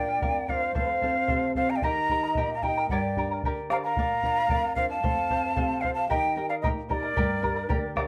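A straight 2/4 pulse at 112 BPM drives this short Andean folk passage in G minor, cut from a longer piece, its mood both festive and melancholic as the harmony cycles through Bb, F, Eb and Gm twice. Up front, a breathy cane quena carries the melody with vibrato and a soft attack, while a larger wooden quena, mellow and hollow, sits distant beneath it on a second line. A shimmering charango with double strings, some octave-doubled, is fingerpicked in accompaniment, joined by a dark, thumb-plucked classical nylon-string guitar that adds a fill from 7.4 seconds to the close at 8.1. The bombo enters at 0.2 seconds with a round, vintage, band-limited tone. A wet studio ambience with a short reverb tail gives the ensemble a gentle sense of space.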